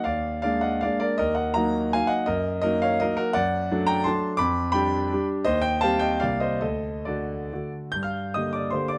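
A concert grand piano, up front with a deep, natural bass, opens this capricious, nostalgic fragment of a romantic triple-time classical dance in 3/4, its dotted rhythms stretched with rubato between 127 and 184 BPM as the harmony turns from Eb minor to G minor at 3.4 s, the solo instrument captured by close, detailed microphones in light reverb.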